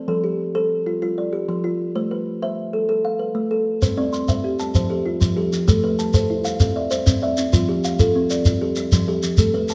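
Close, detailed microphones catch every pluck, set in the moderate bloom of a recital hall with a reverb tail of about 1.3 seconds. This is a hypnotic, rippling fragment of a longer piece in the southern African traditional style, built on an mbira-style interlocking cycle in 12/8 at 129 BPM counted in dotted quarters. A solid-board kalimba opens alone at 0.0 seconds, sitting up front with soft, woody, fingertip-plucked arpeggios that ring short across a range from F3 to C6. A grainy shekere joins at 3.8 seconds, close and prominent in its own small-room space. At 4.0 seconds a second, hollow-box kalimba adds its own mellow, boxy arpeggios a little further back. Underneath, the harmony circles through F, A minor and C, repeating the same section twice over.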